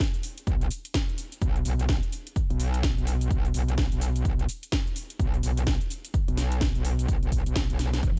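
A swung sixteenth-note groove drives this swaggering, aggressive bass house excerpt, where a punchy, up-front electronic kick and a tape-tinged house kit of cracking snare, metallic hi-hat and shaker underpin a saturated, wobbling FM bass that enters at 0.5 seconds, sounding low and metallic with chorus, overdrive and sidechain pumping, in a dry mix capped by a drum fill at 7.8 seconds.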